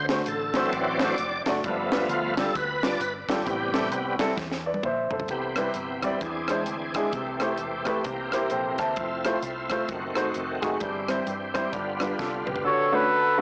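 A swung 131 BPM groove from a tight funk kit with a high-tuned snare drives this jubilant uptempo gospel excerpt in C major, where a shouting tonewheel organ with key click, overdrive and slow rotary speaker solos over intimate concert grand piano, a dark, round hollow-body bass and drum fills, the piano adding its own fill at 8.1 seconds before a punchy horn section takes the melody at 12.6 seconds, all in a blown-out, overdriven recording with lush hall reverb.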